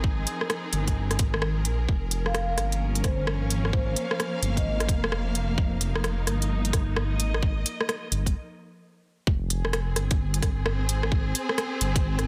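A swung, shuffling future garage groove drives this rainy, wistful clip, with a tight, overdriven layered kick and a smooth-hatted kit of hi-hat and rim click sitting up front in a small room, before a break at 8.3 seconds. A deep, rumbling detuned saw bass and a bowed string section holding sustained chords with vibrato and portamento both pump with sidechain compression, the strings sounding warm and expressive while the bass stays dark and beating. From 2.3 to 4.8 seconds a mellow, metallic vibraphone played with soft mallets rings out a brief melody through dub echo, all within a dense, heavily limited modern master.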